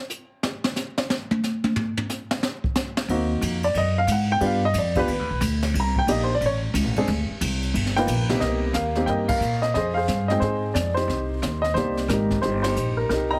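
The baby grand piano takes the spotlight in this swinging, moody jazz trio cut from a longer piece, its intimate, natural tone carrying audible action noise and a short sustain, set up front and given a plate reverb. Brushed drums open the passage alone before piano and pizzicato upright bass join at 3.1 seconds. The piano then carries a solo feature through the first section over shifting dominant and minor seventh harmony, until a new section starts at 8.4 seconds and moves between minor seventh chords. The kit has dark cymbals, a high-tuned snare and a boomy kick, and the woody, thumpy gut-string bass sits low and close, while the full band hits accents at 9.3 and 12.6 seconds. The whole trio sounds like a club with moderate reverb, squeezed into a heavily compressed, radio-like sound.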